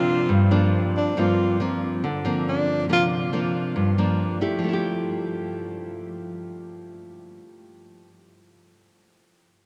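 A straight 4/4 bossa nova groove at 139 BPM in F major sets a breezy, romantic mood in this fragment cut from a longer piece. A breathy tenor saxophone with vibrato, scooped notes and a smooth top leads with a jazz-style line that ends at 3.0 seconds, while an up-front nylon-string guitar, fingerpicked in a classical manner with audible finger squeak, plays on until 8.2 seconds. The harmony moves from Gm7 through C9sus4 to Fmaj9 at 4.6 seconds, set in a vast, echoing cathedral space.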